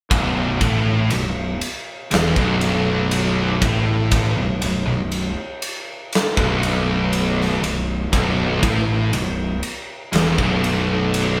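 At 0.1 s the full band crashes in on a B5 power chord in a heavy, ominous stoner and doom metal riff at a slow 60 BPM in 4/4, with two thick fuzz guitars, one dark and one warm and set back in the mix, alongside a tight, bright, double-tracked distorted guitar in the background. A growly, overdriven fingered bass sits underneath, while an up-front acoustic drum kit drives the riff with a punchy kick, a medium-tuned snare and ride cymbal in a stony room sound. Recorded as a band playing live in one room with moderate reverb, this passage is cut from a longer piece.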